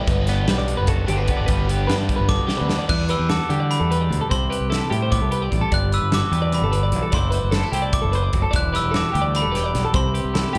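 Intricate and bright, this math rock and midwest emo passage in 7/8, cut from a longer piece, sets two clean, twangy twelve-string electric guitars (one comping chords, the other picking high arpeggios, both with slapback echo) over a growling, overdriven fingered bass and a polished, airy studio drum kit with a tight kick and medium-tuned snare. A biting, double-tracked overdriven guitar riff drives the opening until 2.9 seconds, and at 2.3 seconds a drum fill arrives just as a sparkling, bell-like glockenspiel melody struck with brass mallets enters and rings through the rest. Chords such as Gmaj7, Em9, Cmaj7 and D13/F# colour the harmony, and the whole sound carries the small-room feel of a live club gig heard through the venue's PA, with club reverb.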